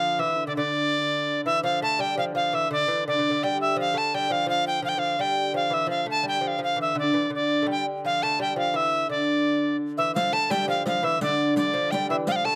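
A bright, reedy soprano recorder carries the melody up front in this driving, mysterious medieval dance in three, its tongued notes showing a touch of chiff, while a delicate fingerpicked lute with gut double strings plays a second line beneath and a woody, smooth-topped hurdy-gurdy holds a drone in the background. A riq with dark jingles joins at 10.2 s, and the recorder, lute and riq each carry a slapback echo in an otherwise dry outdoor sound, cut from a longer piece.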